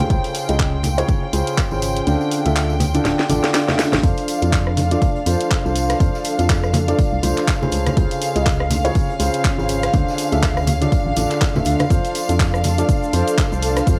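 A warm grand piano riff, boxy and up front, leads this uplifting piano house excerpt at 122 BPM in F major alongside a hollow, organ-like FM bass, a rich violin section holding soft-attack chords, and a cloudy granular pad fading in from the background, with sidechain pumping and cassette-tape grit. A punchy analog kick, layered house kit with a cracking snare, and ringing tambourine and congas drive a swung groove, until the kick drops out at 2.1 seconds, followed by a drum fill from 3.1 seconds and a very quiet electronic swell. At 4.0 seconds a very quiet big-room rock kit slips in beneath the returning kick, as the chords cycle through Dbmaj7, Dm7 and F6.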